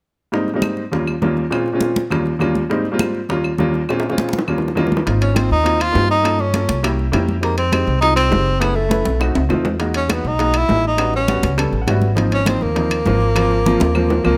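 Close, detailed and lightly reverberant, this sunny, danceable Afro-Cuban jazz excerpt in Ab major moves at 203 BPM. It opens with an intimate baby grand piano with audible action noise over damped congas, very quiet high-tuned bongos and woody claves. A thumpy pizzicato upright bass and ringing metal-shell timbales enter at 5.1 seconds, and a breathy, whispered tenor saxophone solo with scooped notes and vibrato joins up front at 5.2 seconds. Drum fills and piano fills appear along the way.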